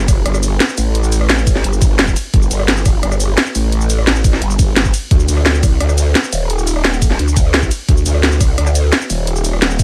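A growling, detuned bass with formant-filtered wobble, overdrive, chorus and sidechain pumping sits up front in this aggressive, mechanical dark technical drum and bass excerpt at 173 BPM, riding low from Eb1 to D2 over a knocking layered electronic kick and an up-front kit of cracking snare, bright hats, ride, rim click and shaker, all kept dry and close.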